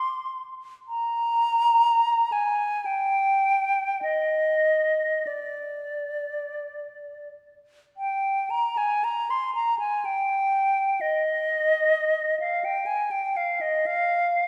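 Classical and unhurried, this is a short excerpt from a longer piece for unaccompanied flute, serene and nostalgic in mood. It moves in a free, rubato 3/4 somewhere between 35 and 66 BPM, in E-flat major. A silver concert flute carries the whole line alone from 0.0 to 14.5 seconds, staying between D5 and C6 with a pure, metallic tone, vibrato and soft attacks. The flute sits up front, yet the listener seems to hear it from further back in a scoring stage, whose wet reverb of about 1.9 seconds lets each phrase linger. A second section begins at 8.0 seconds, shifting the thought before the fragment breaks off.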